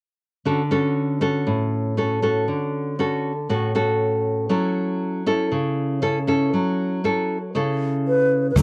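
Bossa nova at 119 BPM in D major, this romantic, breezy fragment is cut from a longer piece and carries a dry, close 1970s-style studio sound. A dark, fingerpicked nylon-string guitar in a classical style sits up front from 0.5 seconds, carrying the accompaniment over Dmaj7 and then F#m7. An airy alto flute with vibrato and a soft attack enters at 8.1 seconds, close-miked and slightly unsteady, giving the melody a warm, intimate presence. At 8.6 seconds the rest of the band arrives. A round, amped fingered electric bass lands prominently on a low D, a smooth open jazz drum kit with a boomy kick, hi-hat, rim click and rolled-off top adds its small-room character, and a grainy, bright tube shaker sits faintly in the background.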